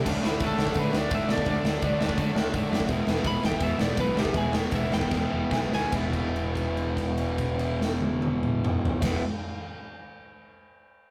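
Rowdy and energetic, this punk rock excerpt drives along in straight 4/4 at 143-169 BPM in E mixolydian, moving from D to E at 2.9 seconds. Two distorted electric guitars pound out riffs throughout, one compressed and up front, the other sitting in the background, while a growly, fuzz-soaked picked bass with overdrive digs in underneath. A big acoustic rock kit with a punchy kick, medium-tuned snare, bright cymbals and toms plays in a stone room, up front in the mix. A twangy, slightly broken-up lead guitar takes a solo from 0.1 seconds, slowing down from 2.9 seconds before a drum fill carries into a closing passage where a held note rings out until 9.0 seconds. The whole take has the rough feel of a rehearsal room, with tube saturation and a short booth ambience.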